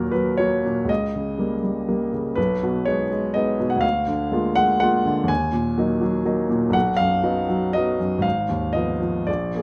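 Bittersweet and brooding, this romantic character piece for solo piano unfolds in Eb minor at 122 BPM in 3/4, its pulse bending freely with rubato. A warm grand piano carries the whole passage from 0.0 to 9.6 seconds, ranging from Ab1 up to Ab5, its smooth, vintage tone placed up front. The harmony moves from Ebm through Eb7/Db and Abm/Cb to Bb7/D, returns to Ebm at 5.3 seconds, then turns to B before arriving on Fm7b5/Ab at 8.2 seconds. Close, detailed microphones capture the instrument, with light reverb lending a touch of air. The recording is a short excerpt cut from a longer piece.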